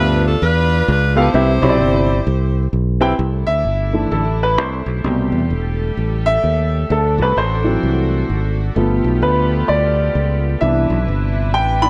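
Hopeful and uplifting, this short uptempo gospel passage at 129 BPM in C major swings along on a punchy, growly fingered electric bass and an open, long-sustaining baby grand piano. An edgy, close-miked saxophone section with vibrato states the melody until 2.7 seconds, and from 3.2 seconds the piano takes a solo over floating, sul tasto strings with a soft attack, moving through rich chords such as Am9, D7 and G9 before settling on Cmaj9. Light reverb gives the whole a small-room ambience.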